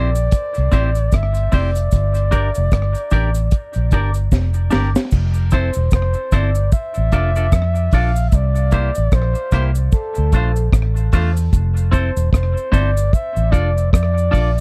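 A mellow flugelhorn carries the melody, its scooped notes and vibrato giving a punchy, pop-style solo voice that trails off into dub echo. This sunny roots reggae excerpt moves at a relaxed 75 BPM in 4/4 with a swung sixteenth-note feel, set in C mixolydian. Beneath it, a clean, bright semi-hollow electric guitar plays picked, compressed accompaniment, also washed in dub echo, while a vintage foam-muted fingered bass sits up front with a round, dark, amped tone. The deep reggae drum kit sounds dry and smooth, with a high-tuned snare, tight kick, rim clicks, hi-hat and crash, and a rolled-off top; a faint, saturated cabasa adds a shaker-like texture in the background. After opening on C and Gm, a drum fill from 4.3 to 5.1 seconds leads into a new passage at 5.1 seconds that moves through Fmaj7, Bbmaj7, C7 and Dm7, all captured in a close, 1970s-style studio sound with little reverb.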